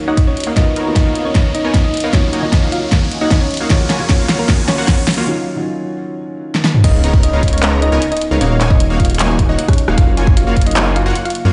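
A half-time 153 BPM groove in 4/4 drives this dreamy, emotional future bass excerpt in Eb minor, where a punchy, up-front electronic kick and a pop drum kit with a fat snare, handclaps, hi-hat, rim click, toms and crash cymbal build with fills beneath a riser, while a filter sweep runs across the airy supersaw stab riff and a round, tine-like thumb-piano-like synth pluck carries the melody through chorus, cassette tape character and delay. A soft, boxy felt-muted upright piano with delay and sidechain pumping sits in the background until 6.9 s, and a very quiet, ethereal pad holds sustained chords over Ebm9, Db13 and Gbmaj7 harmony. After a brief break, the drop lands at 6.8 s with an electronic impact and a thick, detuned saw bass, the stab, pluck and bass all carrying sidechain pumping in a stone room with a dull top end.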